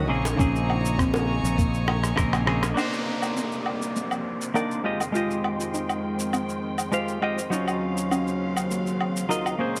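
A semi-hollow electric guitar sits up front in this wistful, smooth sunset chillout excerpt, its clean, fingered tone colored by tape echo as it plays accompaniment from start to finish. Beneath it, a rich chamber string section holds soft-attack, sul tasto chords through a low-pass filter, with a filter sweep on the strings from 2.8 seconds onward, while a very quiet, round pluck traces arpeggios and an airy, breathy wind-like noise texture hovers in the background. A bright, growly fretless bass with analog chorus anchors the opening along with a thumpy, gritty electronic kick and tight, high-tuned bongos heard from a distance, all dropping away by 2.7 seconds during a drum fill. Compressed electronic shaker, woodblock and rim click carry on through the rest, and an electronic downlifter slides in under the second section as the harmony moves through minor ninth chords. A lush hall reverb lends the whole a floating, spacious glow.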